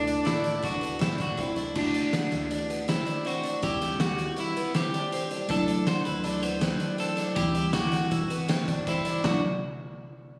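Moving in a straight, uneven 5/4, this bright, intricate progressive band excerpt opens with a hollow, sawtooth-edged lead doubled at the fifth, carrying chorus, phaser and tape echo, which sounds only until 1.4 seconds. An up-front, slightly broken-up electric guitar with spring reverb plays a second line over mellow tine electric piano through its built-in speakers, while a boxy, shimmering octave-doubled twelve-string acoustic picks arpeggios above a woody, thumpy pizzicato upright bass. An oversized, low-tuned drum kit with a fat snare, punchy kick and saturated, rolled-off top drives the cut from 0.1 seconds, all in a moderate studio ambience captured on a phone in the room.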